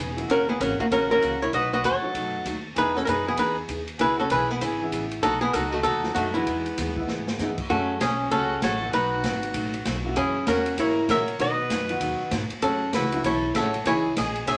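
Swinging and playful, this short western swing cut at 195 BPM puts a dark, clean, compressed archtop guitar up front on the melody, with an earthy fiddle with light vibrato on a second line, a bright dreadnought acoustic guitar in the background, a woody upright piano, a pizzicato upright bass and an airy big-band drum kit with a punchy kick that adds a fill at 7.1 seconds, all over jazzy chords like F#7, Emaj7 and C#madd9 in a wet studio room.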